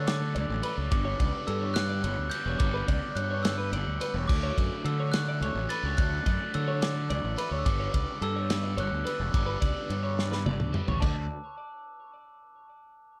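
A growly, up-front fuzz bass anchors this intricate, wistful math rock and midwest emo excerpt in 6/8, moving between Dmaj7 and G6 before settling on D at 11.0 seconds. Above it, a bright, twangy twelve-string electric guitar with phaser and tape echo plays arpeggios, a biting double-tracked overdriven guitar with phaser carries a riff, and a mellow, bell-like glockenspiel played with soft plastic mallets adds a ringing melody. A loose indie drum kit with dark cymbals and a punchy kick plays throughout, rolling into a fill from 10.2 seconds, all within a dry, dark mix.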